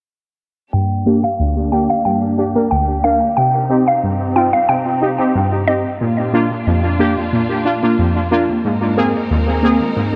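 A straight, bouncy 4/4 dancehall groove sets a sultry mood in this short cut from a longer piece. From 0.7 seconds, punchy, brassy synth stabs sit up front with a detuned sawtooth edge and fast, decaying attacks, shaded by chorus, a low-pass filter and analog delay. Above them, a woody, round mallet-like FM pluck carries the melody with a warbling, vintage character and a touch of noise, also treated with chorus, filtering and delay, until it drops out at 5.8 seconds. Alongside them, a lush symphonic string section holds bowed chords with vibrato and expressive portamento, softened by a low-pass filter. The harmony moves from Gm to Cm, then Bb, and settles on Abadd9, while a filter sweep runs through the whole passage. Wet spring reverb and studio ambience give the mix an echo-heavy character.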